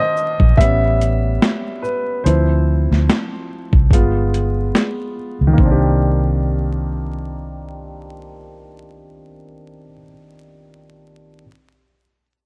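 Reflective and melancholic, this lo-fi hip hop excerpt in C minor moves at 72 BPM with a swung feel, built around an intimate, woody upright piano with audible action noise, cassette-tape coloring and a filter sweep during its solo over the first 5.6 seconds, joined by a gritty, overdriven boom bap sampler-style kit with a thumpy kick that stops at 5.8 seconds and a dark, round, foam-muted electric bass that plays until 10.0 seconds, set against vinyl crackle with little reverb.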